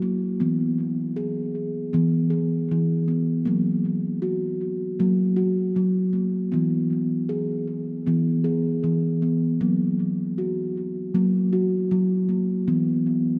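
In a gently swung 4/4, this calm, dreamy meditative world excerpt features a single steel tongue drum struck with soft rubber mallets, its round, ringing, mellow tones placed up front with tape echo, drifting between E and F# chords in a cavernous cathedral reverb that lingers long after each note.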